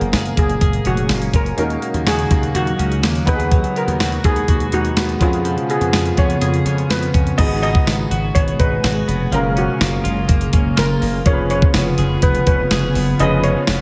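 Glossy and nostalgic, this 1980s-style pop excerpt moves at 124 BPM in F# major, with a shimmering, metallic steel pan carrying the melody through tape echo over a punchy slap bass and a thumpy, sampler-style 12-bit drum machine sitting up front with kick, snare, hi-hat and crash. A twangy, direct-recorded clean electric guitar plays a riff through analog chorus and tape echo, while a polished concert grand piano and an ethereal, detuned pad, both treated with ensemble chorus, sit in the background on lush chords such as F#maj9, D#m7 and C#7/E#. The whole mix is soaked in a dreamy plate reverb, with the harmony shifting into a new section at 7.4 seconds.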